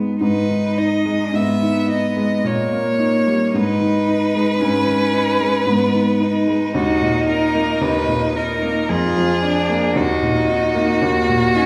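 Grand piano and cello open together, the piano clear with a vintage tone as accompaniment and the smooth, even cello carrying a second line with bowed vibrato. From 0.2 seconds a focused solo violin takes the melody, its rich vibrato set up front beside the piano, in this elegiac, melancholic slow romantic trio movement in three, played with rubato. A wet recital hall reverb places the ensemble further back in the room, and the passage is cut from a longer piece.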